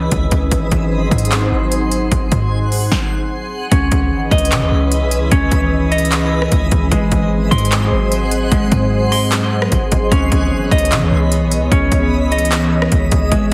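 This melancholic, spacious slice of atmospheric cloud-rap opens on a glassy FM pad holding sustained chords in C# minor, with chorus and reverb around it, a deep, boomy 808-style bass beneath and a reversed, dreamy granular texture shimmering brightly above. The tempo is 150 BPM in 4/4 with a half-time feel, and the harmony rests on C#m9 and G#7. An overdriven, electronic drum kit sits up front with a punchy kick and snare, crisp hats, handclaps and rim clicks, sounding layered and re-recorded in a large room. A brief stop from 2.9 to 3.7 seconds breaks the groove. At 3.7 seconds a clean, fingered electric guitar enters with dark arpeggios trailed by digital delay. The whole mix carries light reverb and a heavily compressed, radio-like sheen, and the passage is cut from a longer piece.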